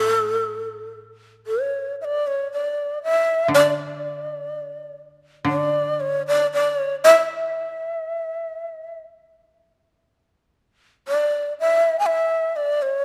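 The rhythm moves freely in rubato around a slow pulse of 59 BPM in 2/4, giving this calm, austere piece of Japanese traditional chamber music a suspended, breathing quality. A breathy bamboo shakuhachi carries the melody up front, its end-blown tone expressive and shaded with vibrato and tongued articulation. Beneath it, a koto played with fingerpicks supplies a low, woody accompaniment that sits softer in the balance and stays dry. The koto drops out at 8.5 seconds, leaving the shakuhachi alone until the cut at 13.0 seconds. A moderate concert hall reverb surrounds the music, lending the sparse texture a sense of open, quiet space.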